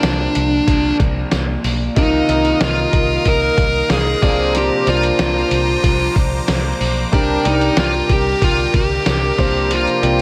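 A straight 4/4 groove comes from a lo-fi, sampler-style drum kit, compressed, pitched down and muffled, with a thumpy kick, a medium-tuned snare, hi-hat and tambourine carrying a tape-warm, small-room character. This nostalgic, moody 1980s-style pop excerpt has a round, punchy, foam-muted fingered bass sitting low beneath it. A polished concert grand piano and a crunchy overdriven guitar, treated with lush chorus and set in the background, shape the accompaniment, while the dark, smooth lead guitar stands up front with its overdriven melody. From 2.0 seconds a sweeping, resonant pad joins, full-bodied and bright, with a detuned sawtooth edge, ring modulation, a filter swell and a slow attack that sustains into a long release. Shimmer reverb haloes the lead, piano, rhythm guitar and pad as the harmony moves through Bbadd9, Ebsus2 and Gm chords, all over C.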